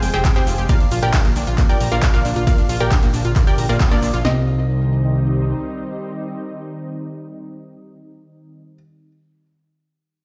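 Uplifting trance at 135 BPM in C minor, this short cut from a longer piece feels emotional and bittersweet, opening in the middle of a drop over Fmadd9 and Bb chords before settling on Cm at 4.2 seconds. A lush, detuned unison pluck carries the melody, shadowed by a brilliant baby grand piano in the background with audible action noise and long sustain, both pumping with the sidechain and trailed by delay. Beneath them a silky, string-like analog pad holds slow-attack chords with ensemble chorus and a touch of vintage 12-bit sampler grit, while a round, warbling analog pluck spins arpeggios through chorus, cassette tape and delay until about 4.5 seconds. A fat, saturated sawtooth bass sits up front with tube saturation, and a punchy, tape-warm drum machine drives the kick and snare alongside handclaps, hi-hat, ride cymbal and a grainy tube shaker, with a band accent at 3.8 seconds before the drums drop away at about 4.4 seconds. 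Light reverb and digital ambience give the mix the sense of a big sound system playing in a bare room with large studio reverb.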